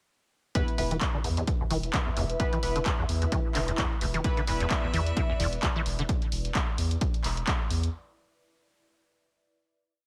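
A squelchy, resonant acid bass leads this hypnotic acid house piece at 130 BPM, its sawtooth line running a seven-step loop that drifts against the bar, with accents, a filter sweep, overdrive, chorus and tape echo, pumping against the kick. An electronic four-on-the-floor kick and a punchy analog drum machine with closed and open hats and handclaps drive a swung groove from 0.6 seconds, while a deep, saturated sine sub bass plays off-beat notes beneath. Sparse, nasal, band-passed chord stabs move one shape in parallel, bright with phaser and echo, over an E chord. An ethereal, airy pad with detuned layers and a noise layer slowly shifts chords in the background, soaked in reverb and phaser. From 4.2 seconds a reedy chamber string section with a gut-string tone adds bowed, sustained chords, and the drum machine plays on until 7.9 seconds in a moderate room ambience, keeping the trippy mood.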